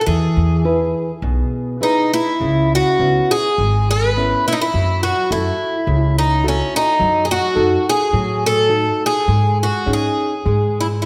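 A rubato 4/4 feel hovering around 104 BPM carries this longing, passionate fado-style ballad in C# minor, cut from a longer piece. A bright, shimmering, octave-doubled picked twelve-string guitar sits up front with a boxy parlour tone, singing the melody over a dark, fingerpicked classical nylon-string guitar whose finger squeaks are audible, while a woody, growly pizzicato upright bass anchors the low end. A moderate scoring-stage reverb surrounds the trio as the harmony moves from E into C#m7 at 2.4 seconds, then through F#m7, D#dim/F# and G#sus4 before the chords fall away at 10.5 seconds.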